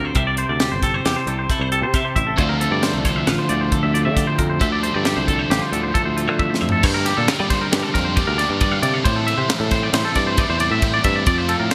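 Twelve-string electric guitar, twangy electric guitar arpeggios and picked electric bass begin together in this math rock and midwest emo excerpt, with a crisp fusion drum kit joining almost at once at 135 BPM in 5/4 and D minor. The bright, twangy twelve-string sits in the background, while the fingered, compressed arpeggio guitar stands up front through digital delay and the growly bass holds the low end. At 2.4 seconds a biting, overdriven, double-tracked guitar riff enters, and the harmony moves through Am7, Dm9 and Dm11 with a wistful, restless feel. A drum fill leads into a new section at 6.8 seconds on Gm7, the airy kit showing off its high-tuned snare and tight kick, and the twelve-string drops out at 9.1 seconds as the chords return to Am7. Light reverb and small room ambience frame a bright 1980s-style digital production.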